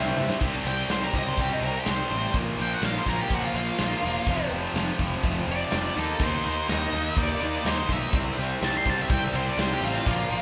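Swaggering and driving, this classic rock cut moves at 124 BPM in a straight 4/4. A gated 80s drum kit, up front with bright cymbals and a tight kick, enters with a fill at 0.2 seconds. A dark, octave-fuzz lead guitar then solos from 0.7 seconds over riffs from a compressed distorted electric guitar and a sludgy overdriven one, and a punchy, fuzz-laden picked bass rides underneath. A grand piano sits in the background, briefly at the start and again from 8.1 seconds, as the band plays live in one room with a lush studio reverb over a C5, Bb5, F5, Eb5 progression.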